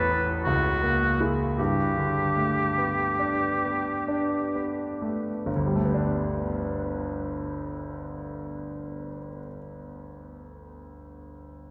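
A warm oboe with light vibrato and a smooth top carries the melody up front in this dreamy, luminous impressionist duo, singing until 4.7 seconds before the clear, deep-bassed concert grand piano continues its accompaniment alone to 11.7 seconds. In a rubato 3/4 at 42-60 BPM in G lydian, the music slows through the opening 5.5 seconds as C#m6 gives way to Gadd9, then moves into a second section. A wet church reverb lends the hall a long, glowing tail, and the passage is cut from a longer piece.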